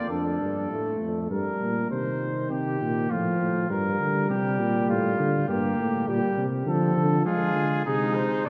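A cornet carries the melody up front in this short cut from a longer classical canzona for brass ensemble, its tone warm yet distant and roomy. Set in an elegant, joyful 3/4 at 101 BPM with a straight feel, the piece moves through minor-leaning harmony such as Dm/F, Gm and Cm before passing through F/A and Gmadd9 to settle on Dm and then Ddim at 7.3 seconds. Beneath the melody, a mellow trombone supplies accompaniment with a light vibrato, soft attack and smooth top, while a tuba, also placed up front, anchors the bass with its own vibrato from 0.1 seconds onward. A clear trumpet with vibrato holds the second line, sounding only briefly at the start before returning at 7.3 seconds to join the close. A lush church reverb with a long decay surrounds the ensemble, lending the imitative brass writing a spacious glow.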